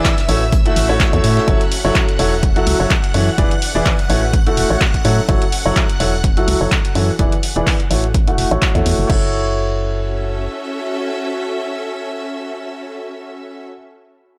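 A brilliant, up-front concert grand piano riff drives this energetic, bittersweet piano house excerpt, pumping with sidechain, carrying dub echo and moving through a low-pass filter sweep until 9.1 seconds over swung chords moving between F#m7, A6 and E7. Beneath it, a hollow, organ-like FM bass with a fast attack and a dark, decaying tone pumps alongside a punchy analog kick and a drum machine of crash, handclaps and hi-hat, while a very quiet brushed kit with hi-hat and snare appears only in the opening 1.5 seconds. Shimmering vintage string-machine violins hold sustained chords with ensemble chorus, and a lush, bowed studio string section with vibrato sits in the background. It outlasts the drums to play with the piano in the final stretch after 9.2 seconds, joined by the bass until 10.5 seconds, all in light reverb.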